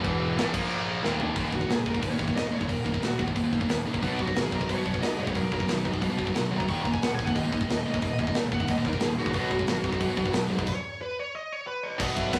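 A straight 4/4 pulse drives this relentless, heavy metal excerpt, cut from a longer piece, with an up-front acoustic drum kit that pairs a tight kick and medium-tuned snare with hi-hat, ride, crash and china cymbals, toms, and a rolled-off top. Two bright, high-gain distorted picked guitars churn through the riff, one up front and the other tucked in the background, while a growly, punchy fuzz bass with overdrive sits beneath them in the background. After a short drum fill at 1.0 seconds, a dark, distorted high-gain lead guitar enters at 1.6 seconds and carries a solo high above the riff. A stop arrives at 10.7 seconds as the solo nears its close. The rough rehearsal-room recording adds a moderate studio reverb that gives the heavy attack a short halo of space.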